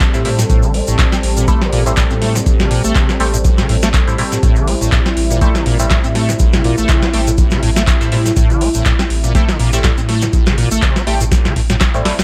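Hypnotic and gritty, this acid house excerpt moves at 122 BPM in A phrygian with a swung 16th feel, resting on a single Am7 chord as a deep electronic kick and a booming analog drum machine with a crisp snare, handclaps and metallic hats pound through a large room, joined by a grainy tube shaker. A squelchy, resonant square-wave acid bass riff with filter sweeps, tube saturation, ensemble chorus and analog delay runs over a thick, mellow sub bass, while a nasal, band-passed sawtooth chord stab with ring modulation, phaser and delay cuts through. A detuned, warbling vintage pad holds sustained chords with subtle chorus, both the pad and the sub bass pumping with sidechain compression, before a drum fill at 11.3 seconds.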